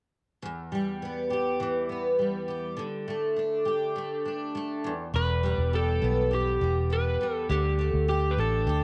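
Bathed in a moderate spring reverb, this tender, wistful pop fragment opens with an up-front, double-tracked steel-string acoustic guitar picked alone, before a round, punchy, foam-muted vintage electric bass enters at 5.1 seconds and a dark, slightly broken-up electric slide guitar, played with fingerpicks through tape echo, takes the melody at 5.2 seconds over Em and Dsus4 chords.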